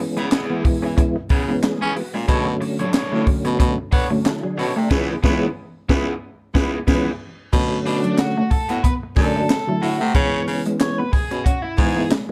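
A biting overdriven guitar, tonewheel organ stabs colored by chorus vibrato and a slow rotary speaker, and a crisp, up-front fusion drum kit with handclaps and bright cymbals open this driving, hypnotic funk excerpt with a swung sixteenth-note feel, joined almost at once by a twangy, slightly broken-up guitar riff in the background and a raspy, gritty baritone saxophone carrying the bass line, while a mellow, distant horn section adds a second line from 2.3 to 7.0 seconds and a band accent from 4.9 seconds leads into an overdriven electric guitar solo at 7.5 seconds, set in a dark production with light reverb.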